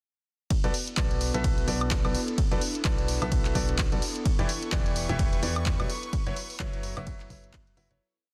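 Soulful and bittersweet, this short piano house piece in B minor moves at 128 BPM with a swung 16th feel, opening straight into a drop at 0.5 seconds where a punchy four-on-the-floor electronic kick and an analog drum machine's handclaps, hi-hats, ride cymbal and woodblock ring out in a large room, while a clear, intimate concert grand plays a close-voiced rhythmic chord riff through digital delay over a round, mellow FM bass, an airy, breathy pad with warbling chorus shifts slowly in the background, and as the harmony moves on from Bm7, a dark, softly bowed violin section enters at 4.3 seconds to hold a high note over Em7 and F#7sus4, with every part except the drums pumping against the kick until the fade-out that begins at 5.5 seconds in a dense, heavily limited modern master.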